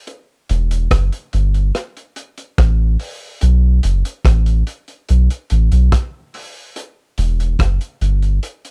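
Meditative and deep, this short excerpt cut from a longer dub reggae piece in E minor moves at a straight 72 BPM in 4/4, with a crunchy breakbeat drum kit of hi-hat, rim click and punchy kick, gritty and saturated with a dark, rolled-off top, sitting up front beside a soft, round sub bass that enters at 0.5 seconds and holds sustained notes between E1 and B1, all captured in a dry, close 1970s-style studio sound that shifts into a new section at 6.8 seconds.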